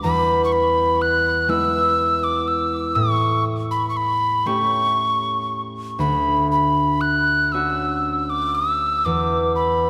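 A mellow, hollow tin whistle with breathy chiff, vibrato and tape echo carries the melody up front, over a ringing, fingerpicked concert harp, in this wistful, tender Celtic slow air excerpt in D major and rubato 6/8 at about 40 BPM, moving through E, A7, Dmaj7 and E7(no3) in a dreamy mix soaked in lush hall reverb.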